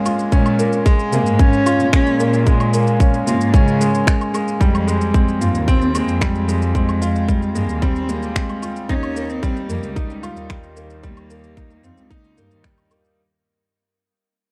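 A dark, woody solo cello with vibrato and digital delay carries the melody over a bright, intimate baby grand piano riff with audible action noise, joined at 0.3 s by a tight, up-front electronic kick and a rich, reedy chamber cello section bowing the bass with sidechain pumping, while an electronic shaker, woodblock and finger snaps fill out this melancholic, cinematic piano-and-strings electronica at 112 BPM, moving through Bbm7, Fmadd9 and Ebadd9 in a dark studio reverb before fading out from 4.6 s.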